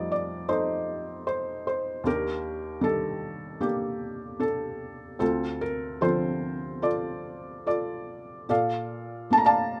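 A felt-muted upright piano plays alone and up front in this calm, peaceful fragment of a lyrical classical solo piece, its soft, mellow, intimate tone with short sustain and audible action noise moving in a rubato 4/4 at about 71-78 BPM across a range of D2 to Bb5 through F9, Ebmaj7, Dm7 and Bbmaj7 in light reverb for 9.8 seconds.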